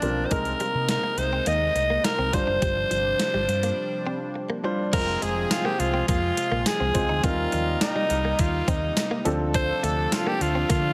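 A raspy, close-miked alto saxophone carries the melody up front from the start, its gritty tone trailed by tape echo, over an overdriven 12-bit drum machine with a thumpy kick, crash, hi-hat, snare, tambourine and gated reverb, a round, punchy hollow-body fingered bass, and a chorused clean guitar riff. This moody, dramatic 1980s-style pop excerpt moves at 104 BPM in a straight 4/4, with a concert grand piano, a bright, detuned sawtooth pad with a filter swell, slow attack and chorus, and the guitar all sitting in the background, moving from Abadd9/C and G7sus4 into Fm, Cm7 and Dm7. After a break at 3.8 seconds, a clear horn section with light vibrato enters at 4.9 seconds with smooth-topped stabs, all set in a light digital ambience.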